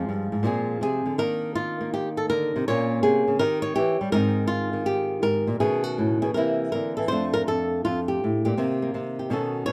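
A lone fingerpicked flamenco guitar opens this short, sophisticated and playful solo jazz fragment, sitting up front with a boxy acoustic tone, audible finger squeak and light reverb captured by close, detailed microphones. At around 163 BPM in 4/4 with a swung, rubato feel, it moves through rich harmony such as Bb9, Eb7b9 and Abmaj9, ranging from F2 to Db5. A new passage begins at 7.1 seconds on F6 before the clip ends at 9.7 seconds on Cm7.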